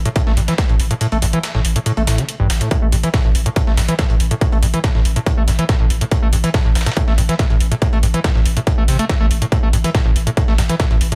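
A straight, driving 4/4 pulse at 141 BPM anchors this dark, relentless peak-time techno excerpt, where a distorted, up-front electronic kick drops out from 1.0 to 2.7 seconds, overdriven electronic hi-hats and a compressed, dusty sampler-style kit of hi-hat and snare recorded in a large room add grit, a deep, saturated sub bass holds A1 with sidechain pumping, and a squelchy, resonant square-wave acid riff between G2 and A3 cuts through with distortion, lush chorus and delay, all set in a digital ambience.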